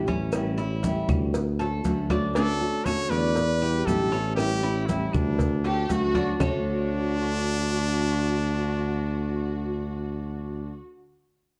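A dark production with light reverb frames this sunny, danceable fragment of Cuban son and guajira, with a mellow, punchy tuba up front on the bass, playing scooped notes beneath a fingerpicked flamenco guitar in the background and a metallic, double-strung Cuban tres picking arpeggios. Thin-skinned congas struck with hard hands join round, low-tuned cowbell and bongos, grainy maracas and faint, woody claves in the percussion, all of which stop at 6.5 s. A bright, close-miked trumpet takes the melody from 2.3 s, and a bowed studio violin section with soft attack and vibrato adds a second line from 5.7 s.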